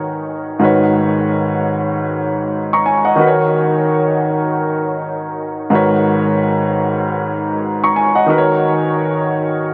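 A worn baby grand piano plays alone and up front throughout this tough, moody hip hop fragment, its long sustain shaped by high-pass and low-pass filtering and an analog delay. The harmony moves between D#m7 and G#m11 over a swung sixteenth-note feel, spanning G#2 to C#6. A huge ambient reverb soaks the dreamy mix, so the 9.7-second passage, cut from a longer piece, hangs in a vast wash of space.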